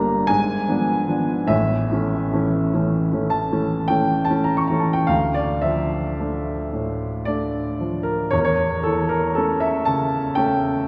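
Bathed in a wet cathedral reverb with a 4.4-second decay, this short cut from a longer romantic nocturne features a solo baby grand piano, warm and open with long sustain and placed up front, spanning G1 to C#6 in a slow, rubato 3/4 at 48-62 BPM, tuned to A4 = 438 Hz, its melancholic, mournful harmony moving from G#dim7 to A before a second passage at 5.1 seconds turns through Dm to A7/E.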